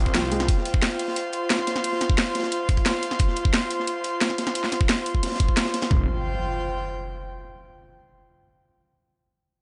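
An overdriven drum and bass kit drives this dark, aggressive technical drum and bass fragment, its cracking snare and bright hats sitting up front in a layered, produced electronic sound with studio ambience. Beneath it, an electronic kick with a knocking punch, re-recorded in a small room, anchors the straight four-beat groove, while a very quiet acoustic breakbeat kit adds a gritty, saturated snare and hi-hat layer with a rolled-off top. An airy, breathy pad with chorus and slow attack floats over the whole passage, soft yet up front, pumping with sidechain on a sustained Fsus2 colour. A swirling, thick detuned saw bass with phaser and its own pumping shows up only in brief bursts, opening the piece and returning at 5.9 seconds as the drums drop out and an up-front electronic impact hits. The mix carries light reverb and a slightly dulled top end, giving the fragment a close, heavy feel.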